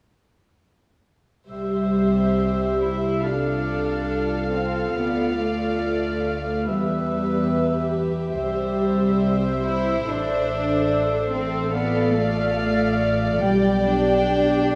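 Cinematic, emotional film score for orchestra, moving and sorrowful, unfolding at a rubato 70 BPM in 4/4 through a progression that opens on C and closes on G/B; all parts enter together at 1.5 s. A dark chamber violin section carries the melody with vibrato and a woody sul tasto tone, while a distant cor anglais with light vibrato, a very quiet clarinet and a floating, pure second violin section weave supporting lines, over a lush viola accompaniment and soft, mellow French horn chords. Rich cello and double bass sections anchor the bass prominently, and a moderate scoring-stage reverb lends the ensemble a roomy depth.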